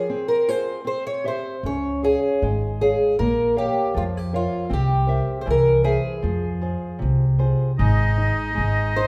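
A dark, shimmering fingerpicked twelve-string guitar carries the octave-doubled melody of this mournful, passionate fado-style ballad excerpt, flowing in a rubato feel over a small, thumb-plucked nylon-string guitar accompaniment, joined at 1.6 seconds by a growly pizzicato upright bass and at 7.8 seconds by a reedy, full accordion second line, all set in a wet recital hall reverb.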